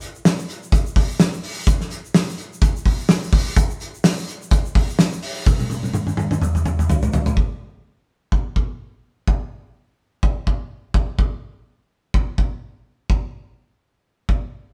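A loose indie drum kit and an egg shaker open this driving, dramatic pop excerpt at 126 BPM in 4/4, with a light swing on the sixteenths. The kit sits up front, its punchy kick and fat snare joined by hi-hat and toms, all carrying a saturated, gritty character with a rolled-off top and a pumping room sound. The grainy, bright shaker stays close and dry in the background, playing only until 7.4 seconds. A drum fill runs from 5.5 to 7.4 seconds, leading into a second section where the kit carries on alone until 14.4 seconds. A moderate stone room reverb gives the performance the feel of a band playing live in one space.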